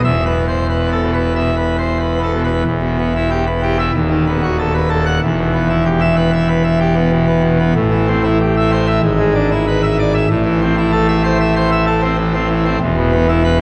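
Dramatic and majestic, this classical organ toccata at 94 BPM in 4/4 is cut from a longer piece and features a solo pipe organ on full organ, its brilliant mixtures, baroque voicing and audible chiff sitting up front across a span from D#1 to F#5. After an opening E5 sonority, the music moves at 2.7 seconds into a new section built on E minor and A minor harmonies with dominant chords such as B7/D# and E7/G#, returning to E5 at 12.8 seconds. A wet church reverb lingers around the organ, while the sound carries the worn, warbly pitch drift of old cassette tape.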